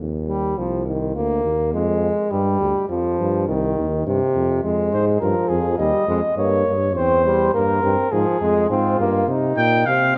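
A clear trumpet with light vibrato carries the melody in this short, serious classical canzona for brass ensemble, though it enters only at 9.6 seconds, high in its range and up front in the mix, just before the fragment is cut off. Before that, the solemn, imitative texture is built from the other brass. A warm bass trombone anchors the bass line from the very start. A trombone, distant and roomy with light vibrato, supplies accompaniment in the register just above. At 4.9 seconds a mellow flugelhorn joins with a second line, its soft attack and smooth top adding a gentle, rounded voice. The ensemble sits in a moderate concert-hall reverb that lends the straight, steady 4/4 pulse a spacious, ceremonial gravity.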